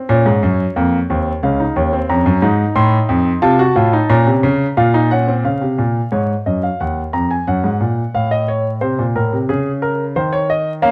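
Close, detailed microphones, light reverb and vinyl crackle frame this serious, solemn baroque-style three-part fugue in B-flat minor, cut from a longer piece, where a warm, natural grand piano plays solo and up front at a straight 89 BPM in 4/4, spanning Db2 to C6 as the harmony moves from Bbm and F7 into a second section at 5.4 seconds built on Gbmaj7, Ebmadd9 and F/A before settling on Bbm/Db.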